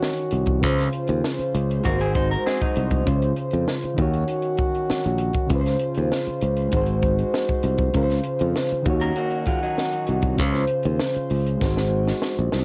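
The growly, bright fingered electric bass stands out most, sitting up front from 0.3 seconds with a punchy, direct tone in this smooth, lush slice of 1970s-style soul cut from a longer piece. Beneath it, a French horn section holds sustained chords in a classical-style ensemble sound, while a reedy electric piano with light overdrive plays accompaniment in the background through its built-in speakers. A compact cocktail drum kit with a dry, high-tuned snare and punchy kick sits close, carrying a cassette tape colour, and closes with a fill at 11.6 seconds. A dark, slightly broken-up electric guitar through a small old amp adds a picked, compressed, lo-fi riff with spring reverb in two short spots, the first at 1.8 seconds. The harmony circles Ebm7, Dbmaj7 and Ab7, and light reverb frames this home cassette recording.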